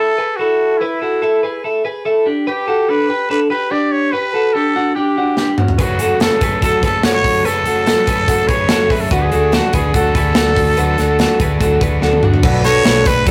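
Captured in a rough rehearsal room with moderate reverb, this short cut of youthful, breezy jangly indie pop moves at 144 BPM in a straight 4/4, built on a chord progression running from Asus2 through G, F#madd9 and D to Bm7. A growling, raspy trumpet carries the melody up front with vibrato, over bright, twangy arpeggios from a clean twelve-string electric guitar. A punchy, polished studio drum kit with bright cymbals arrives at 5.4 seconds on a fill, joined at 5.8 seconds by a crunchy overdriven guitar and a dark, foam-muted fingered electric bass, while round analog keys with chorus slip into the background at 12.4 seconds.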